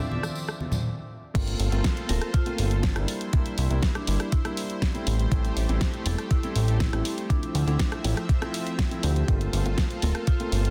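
This cosmic, groovy nu-disco excerpt opens on a dark, mellow concert grand piano beneath a lush, warbling unison pad with chorus, while a filter sweeps across the analog synth pad and both pump against the sidechain. A brief burst of congas and tambourine, distant-sounding yet up front, joins a layered pop drum kit whose fat snare, hi-hat, rim click and crash cymbal sit in studio reverb, before a short stop. At 1.3 seconds the drop lands with a thick, nasal, detuned analog bass, joined a moment later by a thumpy, overdriven electronic kick pushed to the front of the mix. From 2.1 seconds a dry, close-miked vibraphone with medium mallets rings out a metallic melody in the background, trailed by dub echo. The harmony moves through Dm9, Gm11, C7 and Am7 in a small room ambience, finished with a dense, heavily limited modern master.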